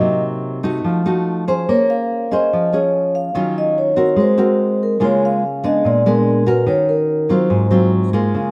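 Over a straight 4/4 bossa nova pulse, this sophisticated, sunny fragment of a longer piece pairs a fingerpicked nylon-string guitar, dark and woody with the sound of old strings, against a soft-mallet vibraphone carrying the melody in a close, dry, ringing tone with its motor off. The guitar sits up front, moving through a lush chain of altered and extended chords from Cm7b5 toward Ab13, while a moderate echo-chamber ambience surrounds the pair. The vibraphone drops out at 7.9 seconds, leaving the guitar to sound on by itself until 8.5 seconds.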